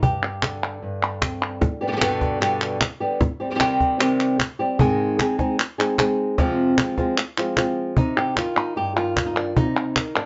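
Flamenco in a fiery, intense mood at 151 BPM in 4/4, this short excerpt features a dark, fingerpicked acoustic guitar carrying the melody over chords moving from Gsus4 through G, Cm, Ab and Fm before returning to Cm. A woody cajon with faint snares and soft hands drives the rhythm from the start, joined at 0.2 seconds by crisp palmas hand claps. Both percussion parts sit close, and all three parts are up front in a moderate studio reverb, with a top end that stays subdued.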